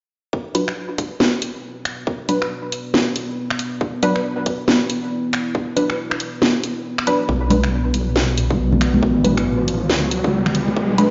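A cavernous, echo-chamber sound with a large studio reverb and a dull top end frames this short cut of dark, deep dubstep in B minor at 138 BPM, swung and felt in half-time. A tight, up-front kick and a garage kit of cracking snare, bright hats and finger snaps drive it beneath a moody, wave-folded pad with ring modulation, while muted, detuned dub chord stabs carry dub echo and a filter sweep; the kick drops out at 6.4 seconds. From 7.3 seconds the build-up brings in a heavy, saturated wobble bass, soft-handed, high-tuned congas with dub echo follow in the background at 7.5 seconds, and an electronic riser joins from 8.6 seconds.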